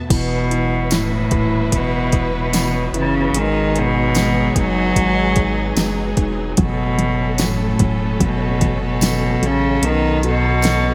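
A slow, straight 4/4 pulse at 74 BPM comes from a smooth R&B drum kit with a soft kick, fat overdriven snare, metallic hats and crash under gated reverb, joined at 0.9 seconds by a jingly, distant tambourine in this emotional, heartfelt pop ballad fragment in E major, moving through Esus2, G#m7, F#m and B7. Up front, a rich solo cello carries the melody with a soft-attack, floating sul tasto tone, over lush, dark symphonic strings with expressive vibrato and a thick, saturated sub bass. A felt-muted upright piano with audible action noise and analog chorus sits boxy and intimate in the background, all wrapped in bright 1980s-style digital production with light small-room reverb.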